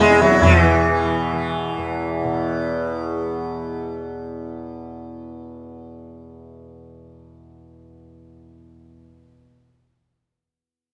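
A brief fragment of serene, meditative Hindustani classical music opens with sitar, tanpura and a close, high-tuned tabla together at 142 BPM in 5/4, the tabla's short-ringing stroke falling away by 0.6 seconds. The up-front sitar carries the melody with a round, plectrum-plucked tone, buzzing and alive with sympathetic strings, until 4.0 seconds, while the bright, softly plucked tanpura drone shimmers on alone to 9.4 seconds. The players share one room, and a lush large-studio reverb of 1.3 seconds surrounds them.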